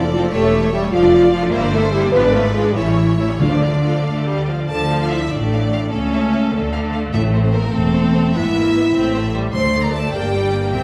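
A dramatic, restless classical-period movement for symphony orchestra opens at once with the full string body and horns, in D minor and 6/8 that moves quickly at around 90-103 BPM with a flexible, rubato feel. A lush first violin section carries the melody from the background while a clear, even second violin line sits higher above it, and the violas fill the accompaniment with expressive vibrato and sliding portamento. Cellos, entering at 0.1 seconds, and double basses ground the harmony with a smooth, rich bass, as a dark, tight French horn section holds sustained chords prominently in the middle of the texture. Very quiet timpani struck with hard mallets add articulate, close and dry accents around 3.4 seconds and again from 7.1 seconds. Chromatic harmony pushes toward the tonic before the second section shifts toward A minor, all set in the reverberant glow of a recital hall, and the passage is cut from a longer piece.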